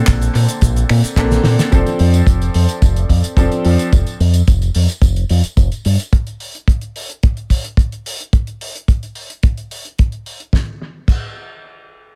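A straight 4/4 nu-disco groove with a sunny, groovy mood rides on a tight, dry kick drum and a damped 70s drum kit with a fat snare, hi-hat, shaker, handclaps, finger snaps and crash cymbal under analog delay, while a fingered electric bass with an envelope filter sits up front with tube saturation, a bright, worn baby grand piano with audible action noise and sidechain pumping plays Bbmaj9 and F6 before stopping at 3.9 s, a tambourine lingers in the background until 6.1 s, and the drums carry on in an echo-heavy small room after the chords drop out at 5.9 s.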